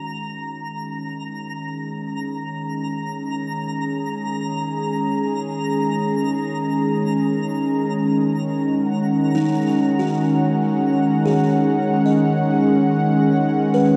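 Dark, cathedral-like reverb fills this spacious, reflective ambient excerpt, which drifts in free time over Ebm7 moving to a rootless B69 at 6.4 seconds. A smooth, detuned sawtooth pad with chorus sits up front holding sustained chords as it fades in, while a sparkling granular FM texture with an octave-up shimmer twinkles high above and fades out across the same 14 seconds. At 9.3 seconds a woody, buzzing kalimba enters with soft, ringing arpeggios carried on tape echo.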